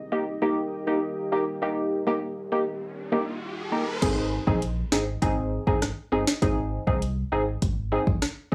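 A straight 4/4 dancehall groove at 100 BPM in Ab major gives this bouncy, sunny fragment from a longer piece its pulse, though the drums hold back until 4.0 s. Before that, a deep, moody pad built from detuned sawtooth and sine layers with a sub octave sustains dark chords on Eb, softened by chorus and its own reverb and pumping under sidechain compression. A crisp, detuned wavetable chord stab sits up front from 0.1 s, its filter pluck striking with a fast attack and then decaying, while an electronic riser climbs in from 2.5 s. At 4.0 s the harmony moves to Ab as a produced afro-pop kit arrives with a deep kick, sharp snare, metallic hats, rim clicks and a crash cymbal, joined by a round, mellow sine sub bass. The sound is dry and gritty with light reverb and a touch of studio ambience.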